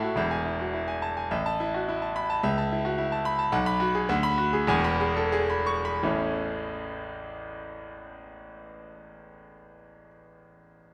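In a supple 2/4 with free rubato, moving between 83 and 112 BPM and easing back from 3.0 to 6.0 seconds, this sparkling classical virtuoso piano study in A major unfolds on a solo concert grand heard through nearly 11 seconds cut from a longer piece. The piano sounds bright and up front, with a deep bass reaching down to E1, polished highs up to C#6, and a short sustain. A moderate scoring-stage reverb of 1.8 seconds surrounds it as the harmony moves from E through A and Bm/D back to E before settling on A at 6.0 seconds.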